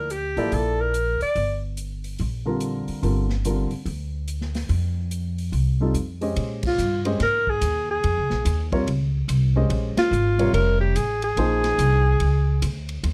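Modal jazz at 144 BPM in a swung 4/4, searching and intense, shifting from G dorian to Bb dorian at 6.4 s in this short cut from a longer piece. A breathy, mellow alto saxophone with vibrato and scooped notes carries the melody, opening with a short phrase and returning at 6.7 s, while a dark baby grand piano comps and a woody, thumpy pizzicato upright bass anchors the low end. An airy, polished big-band kit with punchy kick, ride and crash swings beneath, with band accents at 6.6 and 9.9 s, all captured close and detailed in light reverb.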